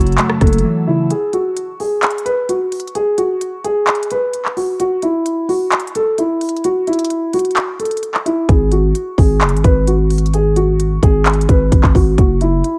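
The recording sits in a digital ambience, with the piano, guitar, bass and drums placed up front and a pad tucked into the background. This dark, melancholic trap cut from a longer hip hop piece moves with a half-time feel in 4/4. A dark, boxy concert grand carries the melody throughout, its deep tone trailed by digital delay. At the start, a clean, compressed, fingered electric guitar and an airy, breathy pad treated with chorus and phaser sound together over an F#m7 chord, but both fall away by 1.1 seconds. The electronic trap kit runs the whole way with a hard-clipped kick, crisp hi-hats, handclaps and rim clicks, while the growling, buzzy 808 bass drops out after its opening hit and returns at 8.5 seconds under a G#7(no3) chord.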